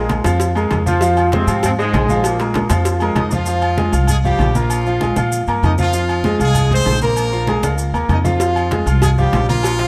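Driving and danceable, this salsa excerpt in F minor moves at 195 BPM, with a bright, up-front concert grand piano and a woody pizzicato upright bass running throughout, while low-tuned congas, grainy maracas, ringing vintage timbales and agogo bells, and a tight, high-tuned cowbell sit in the background. A punchy trombone section with light vibrato carries the melody until 3.2 seconds, when a brilliant horn section takes over. A drum fill arrives at 7.6 seconds, the cowbell returns at 8.4 seconds, and the whole is set in a moderate plate reverb.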